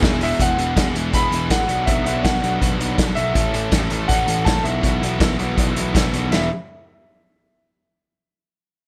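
Indie rock with an upbeat yet wistful mood, moving at 162 BPM in a straight 4/4 in E mixolydian, heard as a short cut from a longer piece. An intimate, woody upright piano carries the melody in a high register, its action noise audible and its long sustain touched with slapback echo. Beneath it, a crunchy overdriven guitar with analog chorus and slapback echo plays a riff alongside a dark, thick fuzz guitar that sits in the background, while a growly picked electric bass holds the low end. The vintage drum kit is up front, with a boomy kick, a medium-tuned snare, dark cymbals, hi-hat and crash, and a rolled-off top in a pumping small room. The chords move from E through Bm, A and Bsus4, returning to E at 6.3 seconds as a new section begins, and the instruments stop shortly after.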